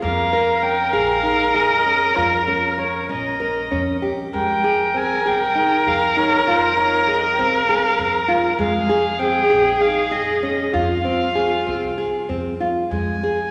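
A wet scoring-stage reverb with a 1.8-second tail surrounds this restless, hypnotic piece of contemporary chamber music, cut from a longer work. It moves in an uneven 7/8 at 195 BPM counted in eighths, with a straight feel in F minor over chords of Eb7sus2, Fm7, Ebsus4 and Fm. A nylon-string guitar sits up front, fingerpicking classical arpeggios with audible finger squeak. A solo viola carries the second line with warm vibrato and expressive portamento until 12.6 seconds. Above it, a single bowed violin sings the melody in a dark, nasal, reedy gut-string tone played in period style, set distant in the room. Beneath them an upright bass on steel strings plucks a woody, growly pizzicato line low in the mix.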